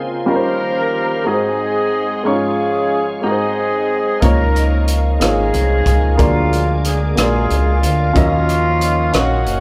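A slow gospel groove in 6/8 at 61 BPM, counted in dotted quarters with a straight feel, moves through a hopeful, soulful passage in Db major, cut from a longer piece. A horn section carries the melody up front with light vibrato, a smooth top and loose, jazz-style octave doubling, while a woody, slightly detuned upright piano with short sustain supplies the accompaniment. Behind them, a reedy tonewheel organ holds sustained chords through a fast rotary speaker and chorus vibrato, its key click audible in the background, and a very quiet French horn section adds soft-attack, vintage, classical-style chords beneath. At 4.2 s a dark, round fingered electric bass and a punchy, gritty acoustic drum kit enter, the kit playing hi-hat, kick drum and rim click in a small, pumping room sound. The harmony travels from Eb13 and Ab7 to Db69, then through Bb7b13/D to Ebm9, all set in a moderate large-studio reverb of a band playing live together in one room.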